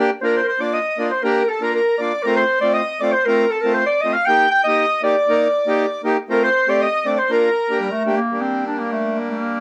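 Festive yet bittersweet, this klezmer passage cut from a longer piece moves at 118 BPM in 2/4 in Bb major: a reedy, full accordion lays down the accompaniment from the start, a warm, roomy clarinet carries the solo melody up front in classical style from 0.2 s, and a second, boxy-sounding accordion plays a higher line until 8.0 s, all set in moderate studio reverb before the harmony turns to G minor at 8.3 s for a brief new section.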